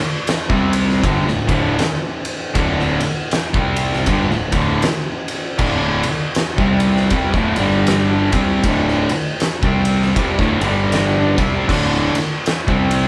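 A cut from a longer stoner and doom metal piece opens at 0.3 s on an oversized, low-tuned acoustic drum kit, up front and gritty, with a fat snare, punchy kick, crash and ride ringing through a pumping stone room. From 0.5 s two thick fuzz guitars, one warm and one dark, sit in the background beside a bright, double-tracked tight distorted guitar, all picking a heavy, hypnotic riff over D5 and G5 at 79 BPM in 4/4 with swung eighths, while an overdriven fingered bass growls low in the mix. The band plays live in one room, bathed in moderate large studio reverb.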